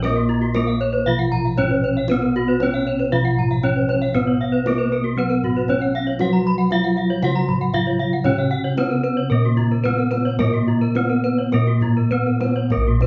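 A straight 4/4 pulse moving between 99 and 117 BPM drives this brilliant, hypnotic stretch of Balinese gamelan in Bb pelog, cut from a longer piece and lasting about 13 seconds. Up front, a bronze metallophone struck with a horn mallet carries the melody in a dark, smooth voice. Its paired tuning gives off shimmering beats. Beneath it, a second metallophone played with padded disc mallets supplies a mellow, soft accompaniment that sits in the background with a boxy small-room character. Two higher metallophones, also horn-struck, spin bright, airy arpeggios above. Bossed gongs anchor the bass with a round, beating tone from padded beaters, heard close-miked, dry and full, while the kendang adds deep, distant hand-played percussion from a large room. The band plays live together in one space under moderate studio reverb, and every part sounds from the opening moment, with the accompaniment dropping out just before the close.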